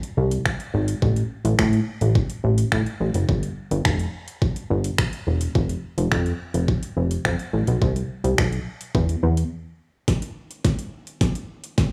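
Bittersweet yet confident, this dance-pop passage, cut from a longer piece, moves in a straight 4/4 pulse. An electronic, layered drum kit sits up front, pairing a knocking kick and fat snare with metallic hi-hats and finger snaps, all pushed through overdrive. A plucky analog bass, built from sawtooth and square waves, carries the low end with a punchy, funky filter pluck whose fast attack then decays, and it pumps under sidechain compression. The bass drops out at 9.4 seconds, opening a short break before a drum fill and build-up take over from 10.1 seconds to the end. A small digital room ambience gives the mix a tight, close sense of space.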